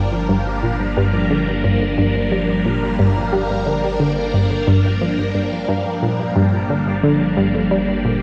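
A lush hall reverb and the warble of worn cassette tape, with its drifting pitch, wrap this brief 8.2-second cut from a longer piece of sequencer-driven ambient space music. It moves at 89 BPM in a straight 4/4, resting on a single G minor seventh chord for an expansive, mysterious mood. Up front, a swirling, vintage string machine with a slow attack holds sustained sawtooth chords, thickened by ensemble chorus, phaser and shimmer reverb. Beneath it, a round, nasal analog pluck with a detuned sawtooth edge, a noise layer and a bright, fast-decaying attack plays a low riff through chorus, phaser and delay, and a filter sweep runs over this arpeggiated synth sound. A deep, mellow sine sub bass sits quietly on a low G underneath, with all three parts sounding from start to finish.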